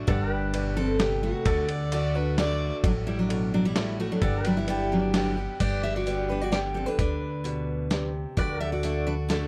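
Down-home and sunny, this honky-tonk and classic country excerpt sways in 3/4 at 130 BPM in G major, with a bright picked acoustic guitar carrying the melody (finger squeak and all) over a woody, full-bodied second acoustic picking accompaniment up front, twangy pedal steel holding clean sustained chords with volume swells, a very quiet mellow vintage piano, a thumpy pizzicato upright bass, and a gritty, compressed sampler-style drum kit with crash, hi-hat, kick, ride and snare, while a distant bowed fiddle with light vibrato slips in briefly from 1.7 to 2.7 seconds, all under light reverb in a dark production.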